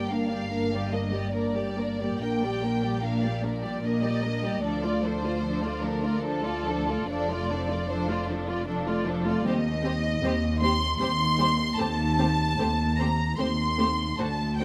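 A dark, intimate violin section sits up front with the yearning melody, played sul tasto with light vibrato and a soft attack, in this slow, elegiac romantic movement for string orchestra in G minor, moving at 75 BPM in a rubato 3/4. Beneath it a pure, floating second violin line and a dark viola section fill the middle, while a close cello section and a warm double bass section hold the bass, all of them bowed softly sul tasto. The harmony moves from Gm through Dm to Cm/Eb and Adim/Eb, set in moderate scoring-stage reverb with a layer of vinyl crackle, and the passage is cut from a longer piece.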